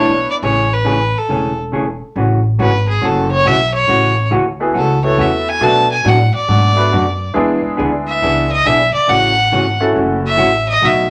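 A wet, short studio reverb surrounds this cheerful, playful western swing piece, taken from a longer performance and moving at 138 BPM with swung eighths in A major. Up front, a clear, earthy bowed fiddle with light vibrato carries the melody and takes a solo from 2.2 seconds, over a clean, dark hollow-body electric guitar played with the fingers and a thumpy, woody pizzicato upright bass on gut strings. A worn, slightly detuned upright piano sounds briefly at the start and returns at 4.6 seconds, adding accompaniment over chords such as Amaj7, F#m11 and E7.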